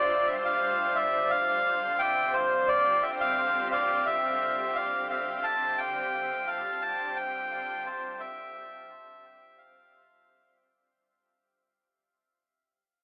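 A reedy, breathy melodica sits up front with a dark, smooth melody trailed by dub echo, while a cloudy, detuned granular pad holds sustained chords underneath in its own built-in reverb. This meditative, hazy ambient dub fragment, cut from a longer piece, rests on a single Fsus2/D chord in a straight 4/4 feel. It has a telephone-like sound with wet spring reverb and a small-room ambience, and begins fading out at 3.6 seconds, the melodica dropping away at 10.6 seconds.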